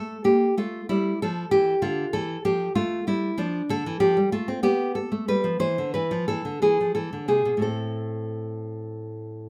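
A small room lends a modest ambience to this short passage, cut from a longer piece, with the nylon-string guitar placed up front and sounding full-bodied. It is a solemn, flowing baroque-style classical dance for solo guitar, unfolding in 12/8 with a rubato feel. The fingerpicked lines carry a warm tone, and an audible finger squeak on the strings adds a close, human touch. The harmony moves from open fifths through D minor and a tense, altered chord before settling on A minor near 7.6 seconds. The guitar plays alone throughout its 9.5 seconds, sounding like a live performance in one room.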